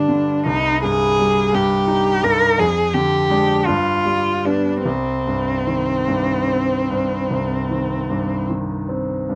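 A rich, bowed solo cello sings an elegiac melody with vibrato and portamento over a bright concert grand piano's brilliant, open accompaniment with deep bass and long sustain, both up front in light reverb, in this solemn romantic classical excerpt in C minor, moving in a rubato 12/8 at 48-59 BPM through Cm, Ddim/F and G7 back to Cm, the cello falling silent at 8.5 s while the piano rings on to 9.4 s.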